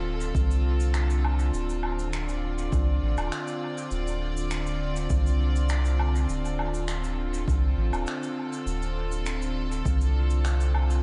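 Ambient dub at 101 BPM in D minor, hazy and spacious, this short section cut from a longer piece rests on a single Dm7 chord, with a rich studio string section holding floating, bowed sustained chords over a deep, round sub bass that sits up front with a fast attack. From 0.2 seconds cabasa, finger snaps and woodblock add a natural, acoustic texture trailed by dub echo, while an electronic kick drum, punchy and overdriven, pulses in the background until 10.0 seconds. The mix carries light small-room reverb and a soft top end, with nothing above 10.4 kHz.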